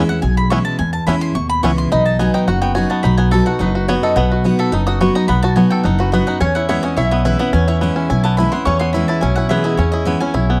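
A bright, woody mandolin takes the solo spotlight for the whole excerpt, playing high stabs over a joyful, virtuosic bluegrass groove in a straight 4/4. Sitting up front, a twangy, percussive banjo played with fingerpicks carries the melody, while a lap resonator guitar adds a metallic, nasal slide second line treated with tape echo. A full-bodied, picked dreadnought acoustic guitar supplies the accompaniment, and a dark pizzicato upright bass with steel strings sits prominently underneath. The harmony moves from E6 to B at 1.9 seconds and returns to E6 at 6.4 seconds. The sound is dry and close, like a 1970s studio session with little reverb, and the clip is cut from a longer piece.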